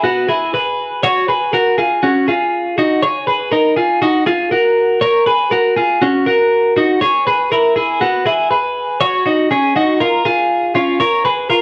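A clean, twangy twelve-string electric guitar opens this short indie pop excerpt on its own, picked and sitting up front with a bright, compressed edge. The mood is bright and breezy, moving at 120 BPM in a straight 4/4 feel in F# major, with the guitar playing solo throughout between B3 and C#5. Its chords drift from E through Bsus2, G#m and F#, then return to E before passing through C#sus24 and C# to settle on a rootless D#sus2 at 11.0 seconds. A wet studio reverb with a short tail surrounds the instrument, and a cassette tape character colours the recording. Cut from a longer piece, the passage runs about 11.6 seconds.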